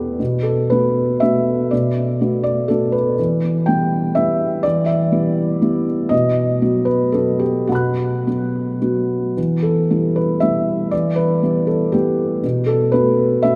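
Melancholic and reflective, this short excerpt of neoclassical minimalist piano drifts in 3/4 at a loose, rubato pace somewhere between 104 and 124 BPM, centered in E minor. A single felt-muted upright piano plays alone throughout the 13.6 seconds, reaching from E2 up to F#6. Its tone is soft and mellow, the thick felt giving each note a hushed, intimate quality, and it sits up front in the mix. That close, muted sound is set inside a wet cathedral reverb with a 4.8-second decay, as if captured in a church or concert hall, so the notes hang and blur into the space around them. The harmony moves through Bm7, Em and B, then returns to Em at 9.4 seconds as the opening passage repeats, before settling on an open B7 chord near 12.4 seconds as the fragment is cut from the longer piece.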